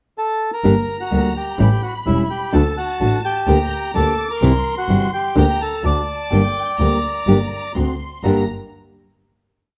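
Tense and melancholic, this short rubato tango opens with a reedy, airy bandoneon alone for a pickup before a clear, intense chamber violin section joins with a bowed counter-melody touched by slapback echo, while a full-bodied fingerpicked nylon-string guitar plays short chords and a rich, focused double bass bows a marcato tango rhythm in four, all in a dark production with light reverb that closes on a final chord held until 9.8 seconds.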